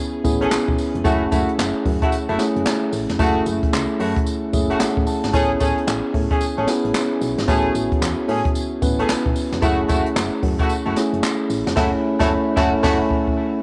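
A mellow tine electric piano opens this slick, bouncy new jack swing excerpt, its clean, up-front tone touched with cassette grit and shimmer reverb, before FM bass and a brushed drum kit join at 0.2 seconds. The groove sits at 112 BPM in 4/4 with a swung sixteenth feel in F# minor, moving between Amaj7 and F#m7. The bass is punchy and round with a fast, decaying attack, while the airy, polished kit adds dark cymbals, a boomy kick, handclaps, tambourine and hi-hat, sitting forward in the mix. A tight horn section enters at 0.4 seconds with smooth-topped, lightly vibratoed stabs colored by analog delay and shimmer reverb. The electric piano takes a short fill from 4.3 to 5.3 seconds, and the band hits an accent near the end as a drum fill closes out the passage. The whole recording has a home cassette character with moderate spring reverb and a studio-room ambience.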